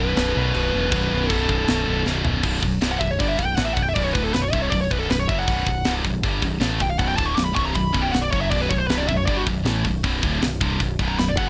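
This dark, aggressive heavy metal excerpt in B minor opens at 158 BPM with a high-gain lead guitar, a bright, scooped and double-tracked rhythm guitar riffing on a B5 power chord, and a growling, overdriven picked bass, while a tight acoustic drum kit with bright cymbals, a high-tuned snare and a tight kick joins at 0.2 seconds in a half-time feel. A drum fill at 2.1 seconds launches a distorted lead guitar solo at 2.4 seconds over B minor, the lead's warm tone sitting high above the riff and low bass. The dry sound keeps the up-front rhythm guitar and the studio-room drums hard-edged and immediate.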